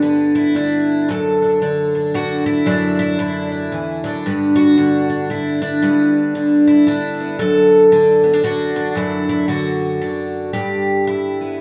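A moderate, large-studio reverb gives this short cut from a longer folk piece an airy, auditorium-like space, with a single picked twelve-string acoustic guitar sitting up front, its fresh strings sounding bright, full-bodied and shimmering through the octave-doubled courses, and finger squeak audible along the way. Peaceful and pastoral, the solo fingerstyle playing moves in a lilting, lightly swung three-beat metre across a range from E2 to A4, circling through G, Dadd9/F# and D/F# before settling back on G at 10.5 seconds for a brief new passage that closes the 11.6-second clip.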